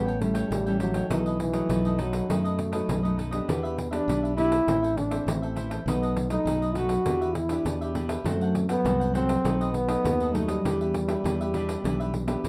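A mellow, up-front trombone carries the melody with vibrato and scooped notes in a jazz-style solo over a nostalgic yet lively samba and choro groove in E minor at 101 BPM, joined by a growly, bright fingered electric bass, crisp picked cavaquinho, a woody fingerpicked nylon-string guitar with old strings sitting in the background, and jingly pandeiro, set in a small room with moderate reverb in this passage cut from a longer piece.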